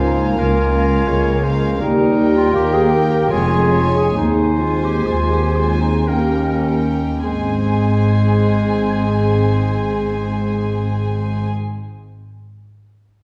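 A chamber violin section carries the melody up top, playing sul tasto with light vibrato and a soft attack for an intimate, close, smooth sound in this lyrical, tender slow romantic movement in triple time with rubato phrasing. Around it, a clear, present oboe, a pure concert flute with vibrato, a mellow, distant clarinet and a floating symphonic violin section in the background each trace second lines. A woody, very quiet viola section with vibrato and a vintage-toned bassoon fill in the accompaniment, while a dark, roomy French horn section holds sustained chords from the background. Rich cello and double bass sections, both bowed sul tasto, anchor the bass with a pure, floating depth. The music slows from 0.7 to 7.3 seconds, where a new section begins. This fragment of a longer piece sits in a wet recital hall reverb with a dark, warm production.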